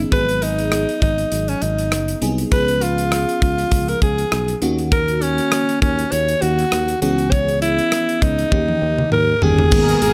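Nostalgic yet urgent 1980s-style pop at 100 BPM with a light 16th-note swing, where a raspy, gritty alto saxophone carries the melody up front over a lush, dreamy FM electric piano with chorus and phaser, a round fretless bass, a polished studio drum kit with a tight kick that plays a fill from 8.5 seconds, and chords moving from G#m7 through C#7, D#m7 and C#m7 to D#7, before a brassy, nasal analog pad and a very quiet jingly tambourine enter at 9.7 seconds in this excerpt cut from a longer piece.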